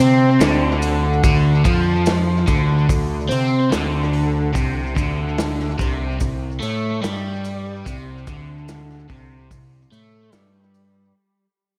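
Psychedelic rock excerpt at a slow 73 BPM in straight 4/4, trippy and hazy, moving from Dm7 to C5 and fading out from 0.6 seconds onward. A bright, double-tracked overdriven guitar riff sits up front with phaser and tape echo alongside a growling, overdriven picked electric bass, while a crunchy breakbeat kit with a tight kick, medium-tuned snare and hi-hat sounds gritty and dark with a rolled-off top under tape echo. Grainy, mellow maracas sit in the background of an echo-heavy mix with light reverb and small room ambience.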